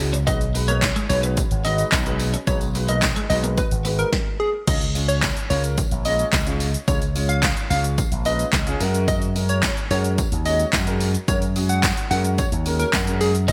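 A punchy slap bass run through an envelope filter drives this summery, euphoric dance-pop excerpt in F# major at 109 BPM, with sidechain pumping shared by a plucky, detuned square-wave unison lead that enters at 0.3 s with delay, and by a warm concert grand piano with lush chorus and a deep, open, long sustain. Up front, a tape-warm analog drum machine puts gated reverb on kick, snare, handclaps, hi-hat, shaker and crash, while a very quiet, jingly tambourine sits beneath and a clean, twangy twelve-string electric guitar riff plays in the background until 4.0 s, returning at 13.5 s after a stop from 4.1 s. The bright 1980s-style digital production moves through B6, C# and F#add9 under light reverb.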